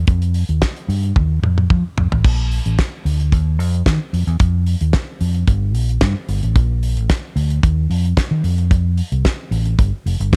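Disco at 111 BPM in Bb major, this short excerpt from a longer piece has a glamorous, celebratory mood carried by just a fingered electric bass and a damped 70s drum kit, both placed up front in a dark, dry production. The round, punchy bass ranges from F1 to F3, while the acoustic kit brings a fat snare, tight kick and dark cymbals across crash, hi-hat and toms. A drum fill from 1.2 to 2.2 seconds leads into the next section, which runs to the end at 10.4 seconds.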